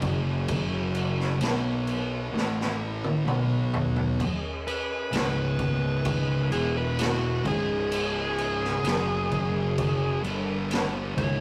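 Stoner and doom metal at a crawling 64 BPM in C# minor, sludgy and hypnotic, with two thick, distorted fuzz guitars picking a low riff in the background over a growly, punchy overdriven fingered bass and an up-front raw garage drum kit with a boomy kick and gritty, rolled-off cymbals. A very quiet tonewheel organ holds sustained chords through a slow rotary speaker, and after a drum fill from 2.3 to 4.2 seconds, a dark, compressed fuzz lead guitar enters at 4.7 seconds for a solo over power chords moving from C#5 to E5, F#5 and G5. The whole cut has the rough, saturated feel of a rehearsal-room recording with light reverb.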